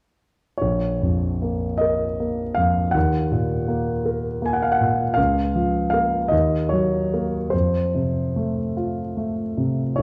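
Warm, up-front concert grand in a moderate recital-hall reverb carries this wistful, mournful romantic nocturne fragment for solo piano, its deep bass and short sustain colouring a rubato 6/8 line from 0.6 seconds as the harmony drifts from Bbm through Ebm and Ebm7 before resting on F.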